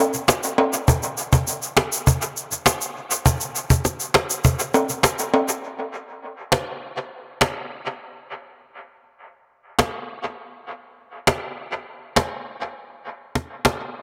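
A woody, up-front cajon with faint snares and hard hands drives this bouncy, tough dancehall cut at 101 BPM in a straight 4/4, running from 0.3 to 13.8 seconds, with its kick dropping out from 12.8 seconds. Close, ringing tube shaker and timbales share the groove until 5.6 seconds. Both parts carry dub echo in an echo-heavy mix with moderate spring reverb.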